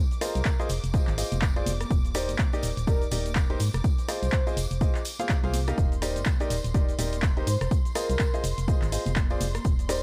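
A swung 124 BPM piano house groove in 4/4 is driven by a punchy, up-front electronic kick and a tape-warm analog drum machine of handclaps, hi-hat, rim click and shaker, with bright tambourine and congas sitting distant in a large room behind them. A hollow, organ-like FM bass and a clear, vintage grand piano riff both pump against the kick, the piano trailing tape echo, while a breathy, warbling flute-like synth lead floats in the background with subtle chorus. Dark, woody strings hold sustained chords over a feel-good, euphoric cycle of Fm7, Ebmaj7 and Ab6, all captured fairly dry in this short cut from a longer track.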